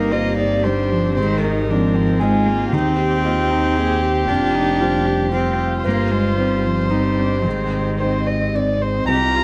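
Neoclassical piano and strings in a rubato 3/4, tuned slightly low, carrying a longing, melancholic mood across this short section of a longer piece. A dark, intimate solo violin sings the melody up front, bowed sul tasto with light vibrato, while a rich, floating cello traces a second line beneath it and a lone viola with an airy bow adds soft accompaniment in the background. A thick-felted upright piano murmurs a mellow accompaniment with audible action noise, a bowed double bass sits distant yet present in the low end, and a very quiet granular pad spreads a blurred, evolving cloud of detuned tone over the Cm7/G, Ab, Eb and Fsus2 harmony, all held together in light reverb.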